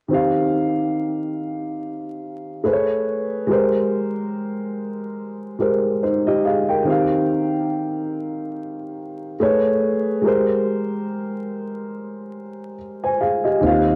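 Cosy and nostalgic, this short lo-fi hip hop fragment drifts along at an unhurried, gently swung pace. A dark upright piano carries almost the whole passage as accompaniment, its mellow, woody voice sitting up front with audible action noise and a long sustain that lets the jazzy extended chords ring into one another. The piano has a cassette-tape character, and the harmony cycles from Eb69 through Amaj9 to Abmaj9 and back again, giving a dreamy, floating colour. Only at 13.6 s does a fretless electric bass appear, growly and punchy with a lush chorus, landing up front just before the clip is cut off at 14.0 s. The whole thing sits in a small, intimate room with a home-recorded cassette feel and a layer of vinyl crackle that deepens the bedroom-tape nostalgia.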